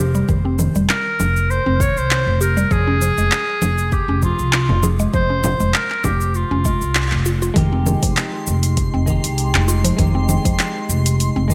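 A 99 BPM groove in 4/4 with a light 16th-note swing drives this hypnotic, earthy organic downtempo excerpt in F minor, built on a woody, thumpy pizzicato upright bass, a deep electronic kick and a layered deep house kit of cabasa, congas, handclaps and metallic hats, joined briefly by a soft-handed frame drum between 4.7 and 6.2 seconds. A round, mallet-like synth pluck spins arpeggios through chorus, phaser, delay and 12-bit sampler grit while a bright, vintage clarinet carries the up-front melody in classical style from 0.9 seconds until a band accent between 7.0 and 7.3 seconds. As the harmony settles from Cm7/F and Fm onto Fm7, a clean, fingered electric guitar enters at 7.5 seconds with lush chorus and sidechain pumping, and a twinkling granular shimmer sparkles high above, all framed by bright 1980s-style digital ambience.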